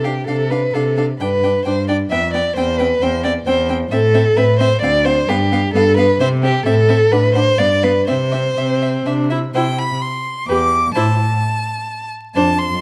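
Close, detailed microphones capture a string quartet in a recital hall with moderate reverb, and a layer of vinyl crackle sits beneath the playing. This quick classical-period movement in triple metre, heard as a short cut from a longer piece, moves with a rubato feel and an urgent, restless mood. The first violin carries the high melody with a focused, vibrato-laden tone. Up front, the second violin plays its second line with a soft attack, portamento and expressive shaping. The viola supplies a close, rich accompaniment, and the cello, also prominent, lays down a smooth, even bass. The harmony travels through cadential progressions that settle on C before a new section at 9.5 s brings in E minor and a bare A chord.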